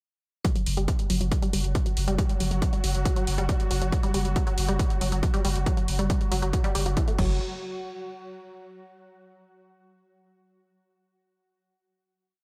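Driving peak-time techno at 138 BPM in a straight 4/4, this short, complete piece feels industrial and hypnotic, tuned slightly sharp to A4 = 443 Hz. A heavy, layered electronic kick sits up front with a four-on-the-floor pulse and a small-room thickness, joined by a punchy analog drum machine supplying programmed closed and open hats, a backbeat and crash cymbal. From 0.7 seconds a deep, saturated sine sub bass holds F#1, its overdriven, low-passed rumble filling the gaps between kicks and pumping against them. A tight sawtooth synth, detuned and chorused with a filter pluck, runs a repeating 6-step loop between E3 and A3 that drifts against the bar, carrying cassette-tape grit, analog delay and sidechain pumping. A swarming, granular drone of detuned unison sines enters at 1.2 seconds with a slow attack, spanning F#3 to F#4 and hanging tense in its own reverb. The groove runs to 7.4 seconds, and a final hit rings out until 9.1 seconds under a light overall reverb.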